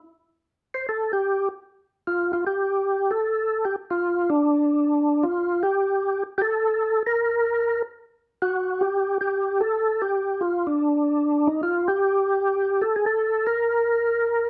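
An overdriven tonewheel organ carries this greasy, bluesy jazz excerpt alone, entering at 0.7 s and playing through to 14.5 s in a swung 4/4 within a compact middle register. Its gritty, percussive tone, marked by second-harmonic percussion, is thickened by chorus vibrato and a slow rotary speaker and sits up front in the mix. A moderate studio reverb frames it within a dark production, with the music moving into a new section at 2.4 s.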